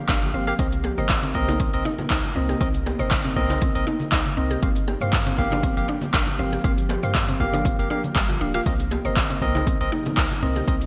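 Driven by a punchy, overdriven electronic kick at 119 BPM with a 16th-note swing, this hypnotic afro house excerpt in C minor pentatonic layers a deep house kit's handclaps and metallic hats, background congas, djembe and a grainy tube shaker, and a deep, boomy 808-style bass under an ethereal, detuned pad, a woody mallet-like synth pluck playing delayed arpeggios, and a barky tine electric piano stabbing over Gm7 and Cm7, with the bass, pad, pluck and piano pumping to the sidechain in a bright 1980s-style digital production with light reverb.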